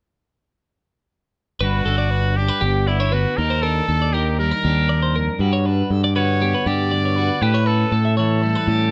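Rock with a playful, wistful air, this short excerpt cut from a longer piece moves at a moderate, straight pulse in four. A punchy, vintage-toned trumpet carries the pop-style lead melody from 1.6 seconds. Beneath it, a twangy clean electric guitar supplies picked accompaniment, while a compressed twelve-string electric guitar spins bright, picked arpeggios in a higher register. The fingered electric bass is the most forward part, growling with overdrive and a direct, amped character. The harmony drifts from Gmaj7 to Ebmaj7 and back before landing on A7, all framed by light reverb in a dark, warm production.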